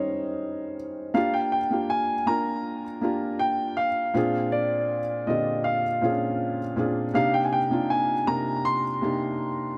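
R&B at 80 BPM, sensual and longing, cut from a longer piece: a felt-muted upright piano opens alone, soft and boxy with audible action noise, laying down intimate chords that move from Eb7 through Gm7, Bb7 and Cm9. At 1.1 seconds a dark baby grand piano enters up front with a smooth, vintage melody, its long sustain trailed by a delay. Light reverb and studio ambience surround the pair.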